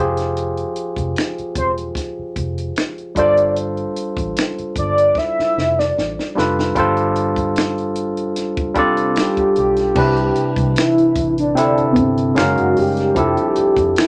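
A moderate club reverb surrounds this sensual, soulful neo-soul and R&B cut at 75 BPM with a light swing, where a velvety sawtooth synth lead with chorus and phaser sings the melody over a barky, lightly overdriven tine electric piano, a round, foam-muted fingered electric bass and a compact, dry cocktail drum kit with finger snaps, dark cymbals and a high-tuned snare that enters at 0.2 seconds and plays a fill from 5.2 to 6.8 seconds, all moving through lush extended chords such as Fmadd9, G9sus4 and Cmaj9.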